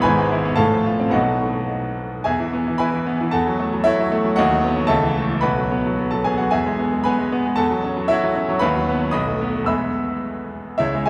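A bright, up-front grand piano plays alone in this sparkling classical virtuoso study in E major, moving at 106-116 BPM in 2/4 with a free, rubato feel and ranging from G#1 up to E6. Its brilliant, natural tone rings into a cathedral reverb with a 4.3-second decay, and after a short opening passage the harmony settles from 2.3 seconds into a cycle that keeps returning to E through F#m7/E and B/D#, closing on B7 to E at 9.7 seconds. This brief excerpt is cut from a longer piece.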